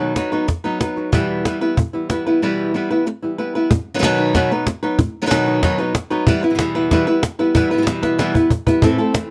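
A bright flamenco guitar carries the melody up front, fingerpicked on fresh strings across a range from A2 to B4, in this short, mournful and intense flamenco fragment at 187 BPM in a straight 4/4. Behind it, a second fingerpicked flamenco guitar plays stabs from E2 to F#4, sitting in the background with a warm tone and audible finger squeak. A snappy cajon with snares joins at 0.2 s, struck with hard hands and placed up front beside the lead guitar. The harmony moves between B and Em over two passes of the same section, and the cajon breaks into a fill from 8.0 to 8.8 s. The sound is close and detailed with little reverb, and the tuning sits at A4 = 438 Hz.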